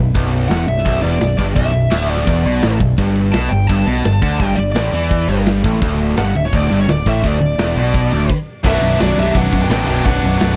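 Relentless and aggressive, this heavy metal excerpt drives at 170 BPM in B minor, with an overdriven electric guitar and a high-gain distorted guitar pounding out riffs over a growling, punchy picked bass. A tight drum kit with bright cymbals and a medium-tuned snare enters at 0.2 seconds, and a bright high-gain lead guitar carries the melody from 0.5 seconds, riding a Bm, G5, D5 progression. After a brief stop at 8.3 seconds, a very quiet scooped, double-tracked guitar riff and a dark second lead line in the background join the close, dry, 1970s-style studio sound.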